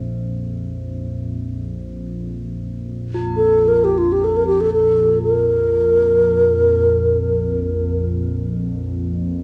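Calm and peaceful, this free-time world meditation piece, cut from a longer work, rests on a deep, dark, detuned ambient pad drone with chorus and its own reverb, while a ringing bronze singing bowl struck with a wooden striker shimmers metallically in the background with slow beating, and a hollow, airy alto flute with vibrato and analog delay sings a short melody up front from 3.4 to 8.0 seconds, all softened by the character of a home cassette recording in a wet studio reverb.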